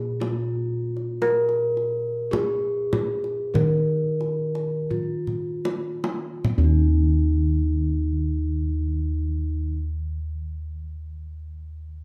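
Javanese gamelan in a shimmering, serene mood, heard in a short passage cut from a longer piece in a straight 4/4. A bronze metallophone carries the melody up front, its metallic tone ringing and airy under padded disc mallets, soft and mellow, with a slapback echo trailing each stroke. Bossed gongs anchor the bass from the start, round and bright with a beating bronze shimmer, sitting slightly louder than the metallophone in the blend. A kendang enters at 0.2 seconds with a tight, acoustic sound that carries a sense of the live room, and it plays a drum fill from 4.9 to 6.4 seconds as the pulse slows through the opening section. A new section begins at 6.4 seconds, the drum falls away at 7.2 seconds, and the two bronze instruments ring on together, captured by close, detailed microphones in light reverb.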